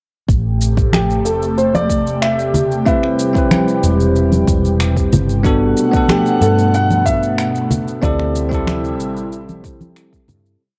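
A dark, boxy baby grand piano carries a motif-based melody, colored by cassette tape and analog delay, in this short, smooth sunset chillout piece in A dorian at 93 BPM, moving from Am7 to Gmaj9 to D9sus4. Beneath it, an airy, breathy pad with chorus, phaser and 12-bit sampler grit holds sustained chords over a round, woody fretless bass playing long gliding notes, while an overdriven electronic kick and a light lounge beat of shaker and finger snaps sit alongside close, dry congas. A bell-like tine electric piano enters at 2.9 seconds with rootless held chords and syncopated pushes, and the groove fades out from 7.2 seconds in a light digital ambience with a homespun cassette feel.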